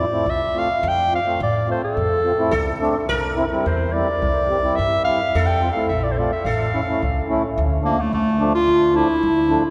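A punchy, up-front clarinet carries the melody in this bittersweet, festive klezmer excerpt in F major at 107 BPM, speeding up throughout, with a buzzing, shimmering sitar line until 7.3 seconds, a reedy, round accordion and a woody pizzicato upright bass, all bathed in a long cathedral reverb as the harmony turns to D minor at 7.6 seconds.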